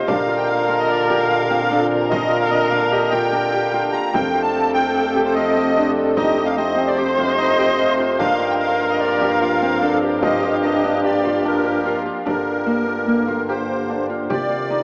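A pensive, hypnotic slice of contemporary chamber music in 5/4 at 148 BPM in G minor opens with a single bowed viola singing a rich, vibrato-laden second line up front, a breathing harmonium holding smooth sustained chords in the background, a Celtic harp ringing out fingerpicked arpeggios, and a dark bass clarinet supplying a subtone bass with scooped notes and a jazz inflection. A shimmering, reedy musette accordion carries the melody close and full, while a deep frame drum struck with hard hands sits further back; the harmony moves from Bbmaj7 through Fadd9 to Gm7, the viola stops at 12.3 seconds, and the music reaches Cm at 14.3 seconds. A huge reverb sets the ensemble in a vast, echoing space, yet the sound comes through as if from a small speaker.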